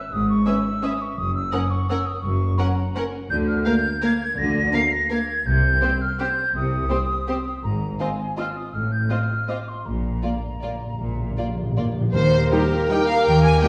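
A silver concert flute opens this festive, sweeping orchestral ballroom waltz with a hollow, mellow tone that sits up front. Cello and double bass sections, then violins and violas, join almost at once, moving in 3/4 at a rubato 150-183 BPM. The violin melody is lush and expressive, with vibrato and portamento. A second violin line stays smooth and close, violas add distant bowed accompaniment, and the double basses carry a soft-attacked bass up front. The harmony drifts from C#m/G# and F# into Eb major by 3.3 s, passing Cm and Fm7/Ab before a timpani fill on round, soft-malleted calf heads at 9.9 s. At 12.1 s the music settles on Eb as clarinet, oboe and bassoon appear in the background, joined by clear French horns holding chords and distant trumpet stabs, all within a wet recital hall reverb and a dark production, heard as a fragment of a longer work.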